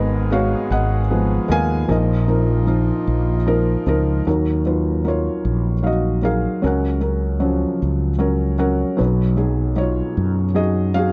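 The sound is dry and close, a small room heard in a 1970s-style studio recording, with a short fragment cut from a longer piece. It is an intimate, heartbroken acoustic folk-pop ballad in a slow, straight 6/8. A felt-muted upright piano carries the melody up front, its tone soft, mellow and warm, with the action noise of its keys and hammers audible throughout. Beneath it, a round, dark fretless electric bass sits just as close and direct, amped with a subtle chorus. A reedy, breathing pedal harmonium holds mellow sustained chords at the start and falls away at 4.2 seconds, just before a new passage opens on an Eb minor chord at 4.3 seconds. The piano adds a brief fill at 7.8 seconds as the harmony drifts toward a closing B chord.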